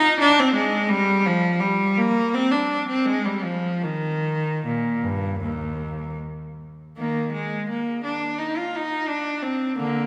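Heard in a wet concert hall with a 2.5-second reverb tail, this short cut from a longer baroque-style suite movement presents a single bowed cello, up front, with a rich, focused tone and vibrato. The solo cello plays alone from 0.0 to 10.1 s in Eb major, ranging from Eb2 to F4 at a flowing, solemn rubato of roughly 74-88 BPM in 4/4, tuned to A4 = 439 Hz. A new section begins at 7.0 s.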